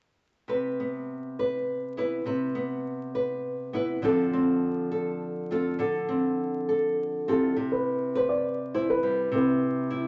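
Folk in C major at 102 BPM in 3/4, tender and hopeful, with an up-front fingerpicked nylon-string guitar accompanying from 0.5 seconds through Cmaj7 and Dm7 before a boxy, thick-felted upright piano carries a soft, intimate melody from 7.3 seconds, all within a large studio reverb and a veil of vinyl crackle in this short cut from a longer piece.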